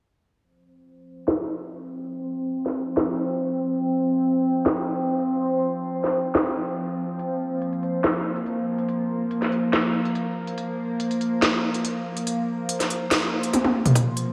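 This meditative, cavernous deep dubstep excerpt opens with a filter sweep over an F5 chord at 0.4 s, and the sweep runs through the whole passage at 142 BPM in a half-time 4/4 feel. A layered, produced garage drum kit sits up front, its cracking snare, crisp hats and toms carrying a tape-warm grain and the sound of being re-recorded in a large room. Soon a string-like bowed drone holds sustained chords from F3 to C4: a tense blend of sawtooth, sine and a noise layer, wave-folded and in unison, with slow attack, vibrato, long release and its own reverb. In the background a reversed, swelling triangle texture on C5 drifts in at 3.2 s, granular and dreamy, with lush chorus and built-in reverb. A drum fill leads to a single tight, high-passed electronic kick at 14.0 s, set back in the mix. The mix is soaked in a plate reverb with a 2.3 s decay and darkened by a low-pass filter.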